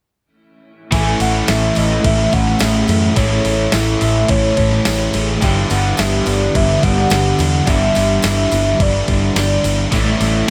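A light reverb gives this short cut from a longer shoegaze and dream pop rock piece a hazy, wistful air, moving at 107 BPM in a straight 4/4 over a shift from Amaj7 to G6 before landing on A at 9.9 seconds. Up front, a crisp 8-bit digital drum machine lays down a thumpy kick, medium-tuned snare and crash cymbal with a tape-warm, sampler-style character, joined by a very quiet, jingly, close and dry tambourine. Beneath it, a dark, round, foam-muted fingered electric bass sits punchy and amped in the low register. In the background, a wall of guitars plays riffs: a biting overdriven guitar with reverse reverb, a fuzz guitar thickened by analog chorus, and a bright, double-tracked, compressed overdriven guitar, while a very quiet, twangy twelve-string electric guitar picks clean arpeggios. Over the top, a hollow, woody clarinet-like synth lead carries the melody from 0.9 to 9.8 seconds, its sustained, mellow tone shaded by vibrato, chorus, phaser and analog delay.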